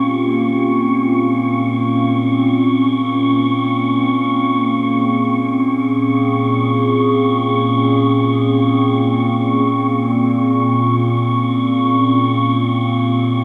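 A lush, dreamy hall reverb soaks this short ambient excerpt, which drifts in free time in Bb dorian with a reflective, melancholic mood. Up front, a warbly, tape-like pad with a nostalgic, lo-fi character and a chorus effect holds slow-blooming sustained chords, moving from Bbm69 to Bbm9 at 2.8 seconds and back to Bbm69 at 11.9 seconds. Behind it, a quieter, airy, wind-like tuned noise texture breathes high above throughout.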